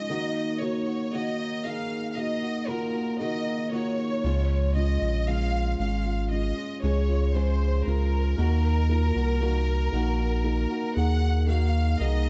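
A dark studio sound with light reverb and a small-room ambience frames this tender, hopeful pop ballad at 58 BPM in 4/4, moving between Ebm and Db in a passage cut from a longer piece. A lush, bowed violin section carries the melody with smooth vibrato over a soft, felt-muted upright piano whose action noise stays audible, while a picked parlour steel-string acoustic guitar plays arpeggios in the background, touched by digital delay. At 4.2 s a round, deep sine sub bass enters up front, warm and sustained beneath the other parts.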